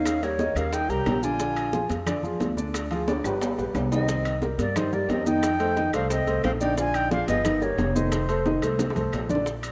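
An up-front, natural-sounding baby grand piano accompanies this danceable, sophisticated Afro-Cuban jazz excerpt at 178 BPM in 4/4, moving through rich harmony built on chords like Eb7, Ddim, Cm7 and Eb13 over woody pizzicato upright bass. A pure, straight-toned concert flute carries the melody with a breathy, vibrato-laced tenor saxophone in the background under tape echo, both pausing at 1.9 seconds and returning at 3.9. Bright congas, tight bongos, ringing metal-shell timbales, soft claves and grainy maracas keep the groove busy, with a drum fill at 3.1 seconds, all set in a lush hall reverb within a rough home-demo mix.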